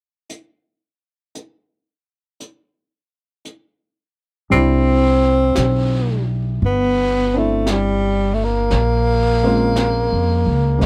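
Late-night and intimate, this jazz ballad excerpt moves at a slow 57 BPM in 4/4 with a gentle swing, set in C major. A vintage brush drum kit opens alone, its high-tuned snare, brushed snare and hi-hat sounding distant and roomy, as if heard across a small room, with a rolled-off top. At 4.5 seconds the band joins over a Cmaj9 chord: a breathy, close-miked tenor saxophone takes the solo melody up front, shaping it with light vibrato and scooped notes. Beneath it, a pizzicato upright bass with steel strings sits up front, woody, growly and thumpy, while a smooth, vintage-toned grand piano with short sustain comps in the background. The harmony shifts to Bbm7 at 8.7 seconds, and the dry sound, with little reverb, keeps the performance close and personal.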